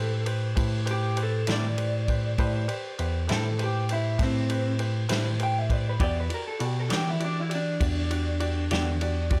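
Mournful and soulful, this slow blues fragment in 12/8 features a clean, slightly broken-up lead electric guitar with subtle chorus, over a woody, slightly detuned upright piano with audible action noise and a bright tine electric piano playing the bass line up front; a vintage kit with a punchy kick, medium-tuned snare and dark ride cymbal enters at 0.3 seconds, a second lo-fi guitar with tremolo joins in the background at 1.5 seconds, and the dry mix moves from Am7 to Em7 at 6.0 seconds.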